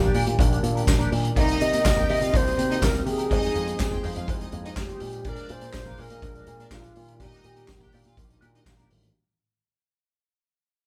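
A straight 4/4 disco groove at 123 BPM drives this short, danceable and sultry fragment. Up front, a vintage acoustic drum kit with a punchy kick, medium-tuned snare, hi-hat and handclaps pumps in a small room, joined by an envelope-filtered picked electric bass, very quiet high-tuned congas played with soft hands, and a jingly, close tambourine that enters at 0.9 seconds. A breathy, bright, slightly unsteady alto flute with a soft attack and vibrato carries the melody over chords moving from Ebmaj7/Bb through Cm7, Fm7 and Bb7. Behind it sit a barky, gritty tine electric piano with medium tremolo through a combo amp, which plays a short fill at 0.6 seconds, a dark, clean semi-hollow guitar with wah and tremolo, and a full, percussive tonewheel organ with key click and a slow rotary speaker holding chords. An intense, bowed string section with vibrato adds a clear second line from 1.4 seconds. 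The band sounds as though it is playing live in one room with moderate large studio reverb, and the whole passage is fading out.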